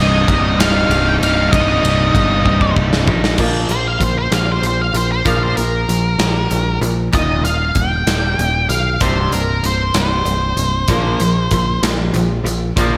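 A big arena sound with lush hall reverb frames this dark, angsty quiet-loud alternative rock fragment, cut from a longer piece and moving at 64 BPM in a straight 6/8 in C minor. Up front, a growly, punchy picked electric bass and a big rock drum kit with a tight kick, medium-tuned snare and rolled-off top drive the music. Behind them, a raw garage guitar and a biting overdriven guitar play riffs, the biting guitar dropping out at 3.4 s and returning at 10.9 s. After a drum fill, a dark octave-fuzz lead guitar with slapback echo takes a solo from 3.4 s over boxy arpeggios from a picked acoustic archtop guitar, as the chords move from Cm through Bb5, Eb and C5.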